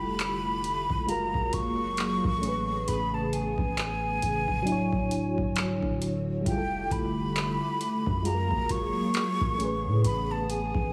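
Contemporary R&B at a slow 67 BPM with a swung sixteenth feel, this smooth, dreamy excerpt sets a breathy concert flute with vibrato and tape echo up front over a dark, full-bodied FM electric piano with tremolo, a hollow, warbling pad carrying ensemble chorus and sidechain pumping, and a long, sine-like 808-style bass. A booming analog drum machine with a deep kick, metallic hi-hats and handclaps enters at 0.2 seconds, sitting up front with a tape-tinged character. Lush major-ninth chords drift from Fmaj9 through F#maj9, Amaj9 and Dmaj9 inside light digital reverb.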